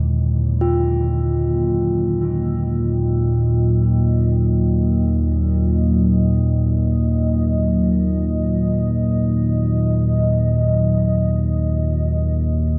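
A low, warbling analog drone in Eb harmonic minor anchors this unsettling, desolate dark ambient excerpt in free time, sitting up front as a filter sweep moves through it, while a deep, detuned pad holds sustained Ebm chords with chorus and its own reverb, and a bright, ringing quartz singing bowl traces arpeggios until 7.0 seconds, all bathed in a cathedral reverb with a 6.0-second tail.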